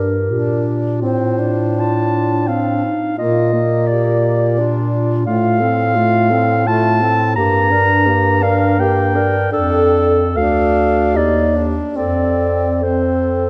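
A wet concert-hall reverb with a long 2.4-second decay wraps this dark, warm recording of a tender, lyrical classical piece for single-reed quartet, a 13.5-second passage from a longer work in 3/4 that moves with rubato between 69 and 89 BPM over a progression opening on G minor. Two dark clarinets play together throughout: the upper one carries the melody up front while the second line sits beneath it with a smooth top. A tenor saxophone with light vibrato fills in the accompaniment, and a roomy bass clarinet anchors the low end, prominent in the blend.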